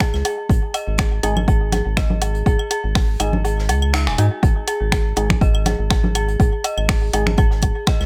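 Minimal techno at 122 BPM in 4/4, this cool, sparse excerpt from a longer piece moves with a light swing on the sixteenths. An up-front, tape-warmed electronic kick drives it alongside a punchy analog drum machine adding finger snaps and hi-hat, while a very quiet acoustic kit played with bundle sticks contributes hi-hat and a medium-tuned snare in a studio room. Overdriven woodblock, claves and congas run through delay, and a round, deep analog bass with tube saturation and sidechain pumping sits prominently underneath. On top, a dark, detuned FM synth bell with an eerie, inharmonic, warbling tone carries the riff through chorus, sidechain pumping and tape echo, joined from 1.2 seconds by a hollow, organ-like percussive stab with subtle chorus and delay. The kick drops out from 3.4 seconds, the band hits an accent at 3.9 seconds, and the drop lands at 4.4 seconds, all bathed in light reverb.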